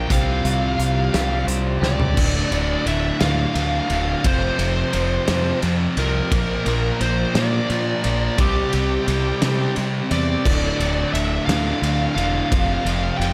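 A very quiet, clean, compressed twelve-string electric guitar plays arpeggios beneath a dark, distorted high-gain lead guitar melody, a bright, heavy high-gain guitar riff, a sludgy overdriven guitar riff, all three carrying slapback echo, and a growling fingered electric bass with overdrive, while a loose indie drum kit with a punchy kick and mid-forward sound enters at 0.1 s and plays a fill from 1.8 s, before the twelve-string stops at 2.2 s and the dark, brooding quiet-loud alternative rock continues in 6/8 under moderate concert hall reverb and a big arena sound, in this passage cut from a longer piece.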